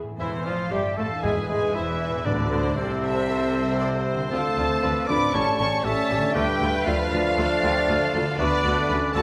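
Cut from a longer, restless and stormy classical piece, this opens with a very quiet, ringing concert harp playing arpeggios over smooth violas and focused double basses, joined at 0.2 seconds by a lush, distant violin melody, a clear oboe, an airy flute ensemble, a background clarinet, a second violin line, a roomy bassoon, mellow French horn chords and a cello bass line, while round, soft-mallet timpani sound from 1.2 to 6.1 seconds inside a wet recital hall reverb.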